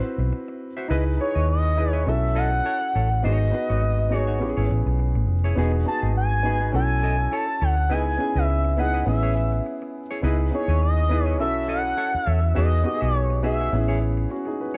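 A nasal, chorus-tinged synth lead with vibrato carries the smooth melody from 1.2 s in this lush 1970s-style soul piece at 103 BPM with swung sixteenths, over a round, foam-muted fingered bass up front, a clean hollow-body electric guitar riff with spring reverb, and an intimate grand piano with audible action noise comping through rich chords such as C#m9, B9sus4 and Amaj7, all in a dark, dry, warm production.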